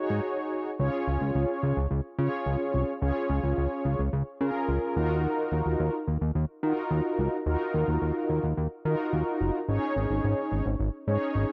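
A fat, saturated analog bass with a sawtooth edge and a plucky filter sits up front in this bright yet wistful synth-pop passage, cut from a longer piece, moving in a straight 4/4 from a brief break into its main section at 0.8 seconds. Above it, a mellow synth brass carries the accompaniment with a round, brassy tone, its chorus and vibrato adding shimmer as the harmony moves from Db through Ebmadd9 to a suspended Ab. A moderate, lush hall reverb and dark, warm production wrap the two parts in a soft glow.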